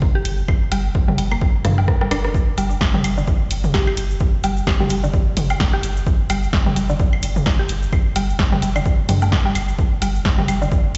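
A punchy electronic kick sits up front in this hypnotic, quirky minimal techno excerpt at 129 BPM with a swung 16th feel, joined by a deep, round analog bass pumping against it, a woody mallet-like synth pluck riff carrying chorus, sidechain pumping and digital delay, an analog drum machine's hi-hat, rim click and snare, and layered electronic woodblock and toms in dub echo, with a drum fill at 1.6 seconds, a grainy, close cabasa entering at 2.4 seconds, and a tine-like, warbling thumb-piano-like pluck drifting through the background on a single note from 3.7 seconds, all heard through a big sound system in a bare stone room.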